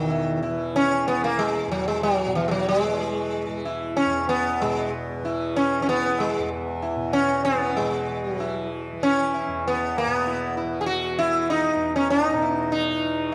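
At a straight 4/4 pulse of about 95 BPM that gradually speeds up, this serene, devotional Hindustani classical excerpt in E raga yaman opens with a plectrum-plucked sitar carrying the melody up front, its buzzing, round tone shimmering with sympathetic strings. Beneath it, a softly plucked tanpura holds a bright, buzzing drone at a lower level throughout. The music moves into a new section at 7.8 seconds, all set in a wet recital hall reverb with a dark, warm production.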